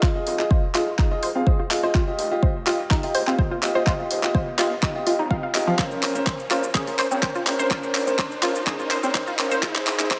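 Set in a lush hall reverb with a high-pass filter thinning the low end, this dreamy, expansive progressive house excerpt at 125 BPM is one long build-up with a drum fill and filter sweeps throughout, moving through Fm7, Ebadd9, Bbmadd9 and Ab. A bright, detuned analog pluck spins arpeggios through chorus, delay and sidechain pumping as its filter sweeps, while a boxy concert grand piano with a deep bass and long sustain plays pumping, delayed stabs up front. A punchy electronic kick and a layered pop kit of handclaps, hi-hat and shaker drive from the start, and from 0.3 s a very quiet riser and a fat, detuned sawtooth bass join underneath.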